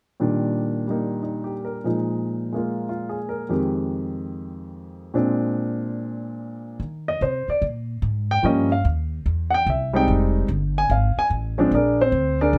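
A warm, natural-sounding baby grand piano carries the melody up front from the start, its short-sustained notes ranging across a broad register in a playful, sophisticated swung jazz trio passage moving through chords like Ebmaj7/Bb, Fm9 and Bb9. At 6.8 seconds a woody, plucked upright bass with steel strings joins close beside it, holding down the low end as the harmony shifts through Gm7b5, Fm7 and Bb7. A light touch of reverb frames the two instruments in this section cut from a longer piece.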